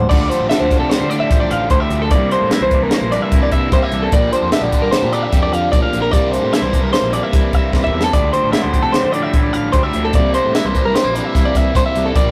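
A rough rehearsal-room recording with light reverb and warm saturation frames this wistful, restless stretch of math rock and midwest emo, cut from a longer piece and moving at 149 BPM in 5/4 over Dm11, C9 and Bb6 chords. Up front, a bright, compressed twelve-string electric guitar rings out clean arpeggios beside a crisp fusion drum kit with a high-tuned snare, tight kick and dark cymbals, while a double-tracked overdriven guitar with phaser plays the riff and a round, punchy fuzz bass anchors the low end. A twangy clean guitar adds accompaniment in the background, and the drums break into a short fill at 7.7 seconds.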